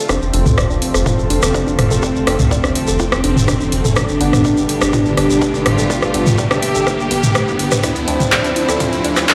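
A straight 4/4 pulse at 124 BPM drives this hypnotic, dark melodic techno build-up, where an overdriven, dry analog drum machine up front hammers out handclaps, hi-hat, rim click and toms over a background electronic kick, a grainy shekere and a round, tube-saturated analog bass. Meanwhile a sidechain-pumped nasal unison lead with lush chorus, a clear studio violin section, a rich gut-string chamber ensemble, punchy detuned unison pluck arpeggios, and edgy sync-sweep polysynth stabs entering at 0.3 s all move through filter sweeps across F, G and Dm7, with dub echo trailing every one of them except the chamber strings. They sit over a very quiet swarming drone, alongside a warbly lo-fi tape-like pad and an electronic swell and riser, all bathed in a lush hall reverb.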